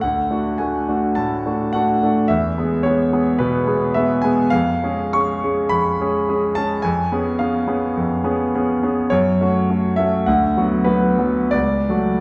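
A clear concert grand piano, up front with a deep bass, natural tone and long sustain, carries this brooding, passionate romantic character piece alone, spanning C#2 to C#6 across its 12.2 seconds. The playing moves in a flexible rubato in 4/4 at roughly 83 to 110 BPM, with harmony that travels from D and E through C#7 before settling into F# minor. A wet recital hall reverb surrounds the piano in this passage, cut from a longer work.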